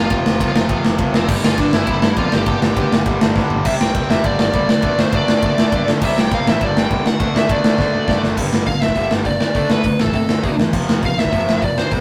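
Upbeat and rowdy, this fast punk rock passage, cut from a longer piece, charges ahead in a straight 4/4 feel. A dark, high-gain lead guitar carries the melody through distortion, while a bright, double-tracked overdriven guitar hammers out the picked riff beneath it over chords moving among F5, G5, C5 and D5. A growly, punchy picked bass sits in the background with a direct sound, and the acoustic rock kit stands up front with a medium-tuned snare, a thumping kick, glittering cymbals and toms, firing off fills at about 3.4 seconds and from 7.8 seconds as the music shifts into new sections. The whole mix has the rough feel of a rehearsal-room recording, with tube saturation and a light reverb.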